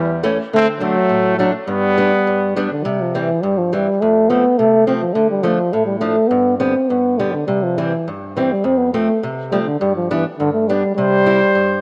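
Festive and bouncy, this short cut from a longer alpine folk piece moves in a rubato 2/4 at 104 BPM in C major, with a mellow euphonium carrying the melody up front in a smooth, classical style throughout. A soft-edged trumpet adds a second line in the opening 2.5 seconds and returns at 11.0 seconds, while a fingerpicked old ladder-braced acoustic guitar supplies a dark, woody, boxy accompaniment underneath. A moderate plate reverb surrounds the band as the harmony settles from the opening section into a longer second section starting at 2.9 seconds, closing on C.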